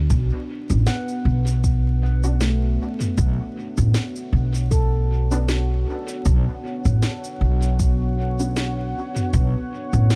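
Deep and spacious, this brief ambient dub passage in B minor moves at 78 BPM with a swung 16th-note feel, anchored by a thumpy, woody pizzicato upright bass up front and a layered electronic kick sitting in the background. A produced, tape-warm drum kit of shaker, toms and a woody snare carries dub echo, while a moody, detuned sawtooth pad with slow attack and chorus holds a sustained Bmadd9 chord. A meditative handpan rings out arpeggios through tape echo from 0.9 seconds, and a muted, filtered dub chord stab with gritty 12-bit sampler texture appears between 2.2 and 8.5 seconds, all over a dry mix with prominent vinyl crackle.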